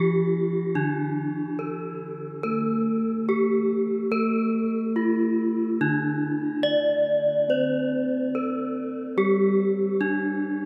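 Gamelan in a ceremonial, shimmering mood, this brief passage cut from a longer piece sets a bright bronze metallophone, struck with a horn mallet and tuned in pairs so its notes beat and shimmer, carrying the melody up front over a mellow, soft-toned second metallophone played with padded disc mallets in the lower register, both ringing through a cathedral reverb that lingers around 6.7 seconds.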